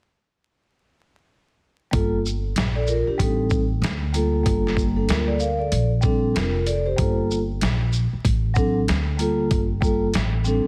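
Cool and smoky, this short jazz-hop excerpt moves at 95 BPM in 4/4 with a 61% swing on the sixteenths, set in G minor and tuned slightly low to A4 = 438 Hz. A boom bap sampler-style drum kit sits up front, gritty and pitched down, its thumpy kick, medium-tuned snare, hi-hat and shaker all compressed. Beneath it, a pizzicato upright bass with steel strings gives a woody, warm low end between F1 and D2. Over these, a vibraphone played with soft mallets and its motor off rings out in mellow, metallic tones across a chord cycle that moves from Gm9 through Am7b5 and D5, touches Bbmaj13, and returns home. All three parts enter together at 1.9 seconds and play to roughly 10.7 seconds in a small room, and the whole mix carries a squeezed, radio-like compression and a layer of vinyl crackle.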